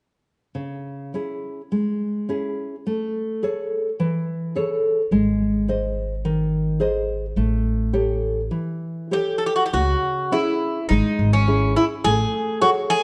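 A Greek bouzouki carries the melody from 9.1 s, its picked double strings, some doubled at the octave, ringing metallic and up front in this passionate, mournful fado-style ballad excerpt in C# harmonic minor, taken at a rubato 105 BPM in 4/4. Beneath it, a classical nylon-string guitar fingerpicks the accompaniment from 0.5 s, with finger squeaks audible, over chords moving from C#m through Amaj7, G# and A7, while a woody, dark pizzicato upright bass joins at 5.1 s. A moderate recital hall reverb gives the acoustic trio a sense of space.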